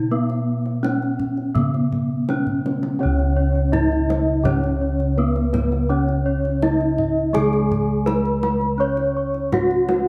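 A serene, shimmering Javanese gamelan passage opens with an up-front bronze metallophone melody, its paired tuning producing shimmering beats in a boxy small-room sound, over a ringing, wooden-mallet metallophone accompaniment and round, beating bossed gongs; the deep, soft-handed kendang joins at 0.3 seconds and plays a fill from 2.5 seconds, before a dark, smooth metallophone adds arpeggios at 3.0 seconds, all set in a moderate recital-hall reverb.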